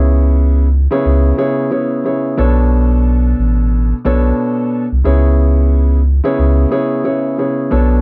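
A boom-bap hip-hop groove at 90 BPM in 4/4 swings its sixteenths at 60%, setting a dark, tough mood across this short clip cut from a longer piece. A soft dub sub bass sits up front from 0.0 to 8.0 seconds, deep and round with a fast attack and sustained notes that blend triangle and square wave tones between A1 and C#2. A grand piano plays accompaniment over the same span, smooth and vintage in color, its range running from B2 to C#5 and shaped by high-pass and low-pass filters. The harmony moves from C#m7 to Bm7 at 2.4 seconds and back to C#m7 at 5.1 seconds, with the tuning set at A4 = 435 Hz. Light reverb and a dark, warm production give the whole clip a shadowy, close feel.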